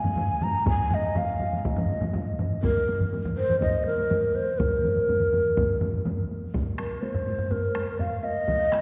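A reverberant concert-hall sound, heard from further back in the room with a long 2.4-second decay, frames this short, powerful and ceremonial cut of Japanese traditional taiko music. It moves at 123 BPM in a straight 4/4, built on a Bb suspended pentatonic scale. Up front and close-miked, an end-blown bamboo shakuhachi carries the melody within a range of Bb4 to Bb5 with a breathy, hollow, mellow straight tone and soft attack, playing throughout. Beneath it sit three taiko ensembles: one struck with hard sticks, vintage and band-limited in the background, which stops at 8.1 seconds; another with hard sticks, close and dry; and a third with heavy sticks, compressed and saturated, also set back. A solo taiko part on heavy sticks, close and dry, enters at 0.7 seconds, and the piece shifts into a new section at 6.5 seconds before the cut ends.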